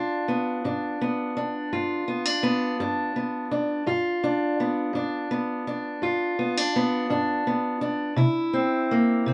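A fingerpicked steel-string acoustic guitar carries this short blues fragment on its own, sitting up front with a dark, boxy parlour tone. The mood is rollicking yet laid-back, moving in a 12/8 metre with a straight feel. The guitar's range spans G2 to F4, and the harmony holds on a G7 chord until a shift to C7 at 8.2 seconds, just before the clip ends at 9.3 seconds. A wet booth gives the instrument a short, close ambience. Cut from a longer piece, it plays as a single relaxed passage.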